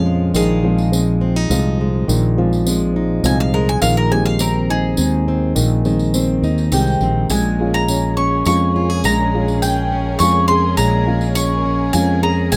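Reflective and melancholic, this acoustic folk piece in Bb dorian moves at 104 BPM in a straight 3/4, cut from a longer performance and captured as a rough, dry home demo. A bright bowl-back mandolin carries the melody up front, taking a solo from 0.0 to 7.3 seconds over a fingerpicked plugged-in steel-string acoustic guitar, woody, boxy arpeggios from an upright piano, a round, punchy fretless electric bass and a jingly tambourine that enters at 0.3 seconds. At 7.3 seconds the harmony shifts to Bbm7 as a dark chamber string section joins with soft-attack, sul tasto sustained chords carrying light vibrato.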